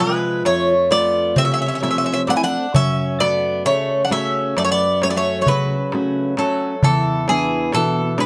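A bright, metallic bouzouki leads up front with the melody, its doubled strings ringing over a second, warmer bouzouki line and a dark, fingerpicked steel-string guitar that also sits up front. This peaceful Greek folk excerpt moves in 9/8 with a straight feel, and a crisp, small metal-shell darbuka joins at 0.5 seconds, close and dry. The chords pass from F to F#m to E7 under moderate studio reverb and detailed, intimate miking.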